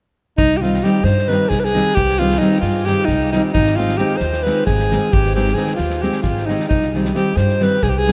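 Balkan folk in a fiery, virtuosic wedding-band style, this excerpt from a longer piece moves at 266 BPM in eighths in a straight 7/8 and C harmonic minor, with a bright, up-front alto saxophone soloing in classical style with light vibrato over woody pizzicato upright bass, a small-room acoustic drum kit of tight kick and medium-tuned snare played with bundle sticks, and a fingerpicked nylon-string guitar that joins at 0.6 seconds, all bathed in a huge ambient reverb that evokes a vast, echoing space as the chords move from Cm to Ab and back to Cm.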